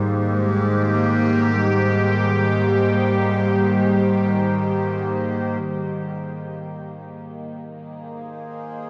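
Bathed in a huge, wet reverb and the worn, warbling pitch drift of old cassette tape, this serene ambient fragment pairs an intimate solo cello, played sul tasto with an airy bow, soft attack and light vibrato through a diffuse delay until 5.0 seconds, with a bright, morphing wavetable pad that sustains up front on chorus-washed, shimmering chords from Cm7/Ab settling to Abadd9 at 5.6 seconds.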